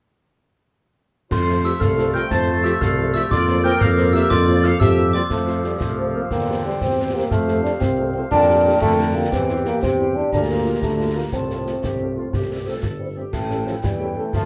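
A clear euphonium with a vintage tone stands out in this spirited, proud military-style march for wind band in 6/8, entering at 4.8 s to carry a solo second line through the rest of the excerpt. The melody belongs to a tight trumpet section of dark, classical colour, set distant in the room, while a woodwind section with light vibrato adds a mellow second line alongside it. A ringing, bell-like glockenspiel struck with brass mallets sparkles over the opening stretch before falling away at 5.3 s. Underneath, a brilliant trombone section holds sustained chords in the background, French horns fill out the accompaniment, and a solo tuba anchors the bass. Concert snare drum, clash cymbals and concert bass drum sound close and dry, and the horns and winds sit further back in a small, reverberant room as the harmony moves from plain major chords toward richer seventh chords in the second section.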